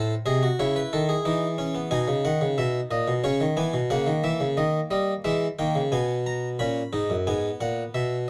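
A dark, intimate production places a single harpsichord up front in a small room, its close-miked tone dry and round with a modest touch of reverb. This short cut from a longer baroque-style fugue in three parts moves at a stately 89 BPM in a straight 4/4, and its mood is both dignified and joyful. The French-style instrument, strung with one set of strings, sounds full and plucked as its voices range from F#2 up to B5 across the full 8.3 seconds. The harmony turns from G# through C# minor, G# minor over B and D# before the music shifts into a new passage at 7.3 seconds on G# minor. The overall effect is a cozy, focused view of contrapuntal keyboard writing.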